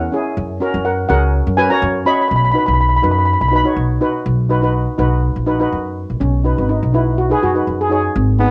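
A cassette-tape home recording in a small, moderately reverberant room gives this sunny, carefree calypso fragment in B major a homely grain, moving at 123 BPM with a light sixteenth-note swing. A mellow, shimmering lead steel pan carries the melody up front, supported by a second metallic steel pan playing accompaniment and a woody pizzicato upright bass, while the harmony shifts from F# to B, then Bmaj7 and Badd9. At 8.4 seconds a punchy, close-miked trumpet bursts in with a single forceful jazz note just as the clip ends.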